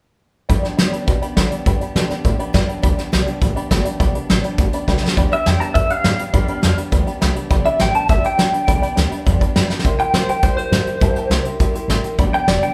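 Brushed drums with a fat snare, thumpy gut-string upright bass, a bright, picked dreadnought acoustic guitar and a woody, slightly detuned upright piano in the background open this rowdy, rollicking rockabilly excerpt, played live in one room and set in a moderate large studio reverb, before a twangy, slightly broken-up electric guitar with tremolo takes the melody up front at 5.3 s, with drum fills and a piano fill at 9.0 s along the way.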